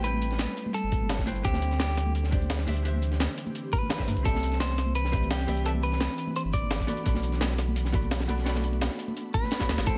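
At 171 BPM in a straight 4/4, this rolling, dreamy liquid drum and bass excerpt layers a gritty, pitched-up sampler breakbeat with a dark, saturated breakbeat kit and soft-handed congas in the background, while a thumpy electronic kick enters at 0.9 seconds and a drum fill lands at 9.5 seconds alongside a round, deep sine sub bass up front, a clean picked electric guitar melody roughened by 12-bit sampler grit and delay, a hollow-body jazz guitar accompaniment in dub echo, and an ethereal, mellow pad whose sustained chords pump with the sidechain through chorus and phaser across Am9, D9sus4, Cmaj9 and Bm7.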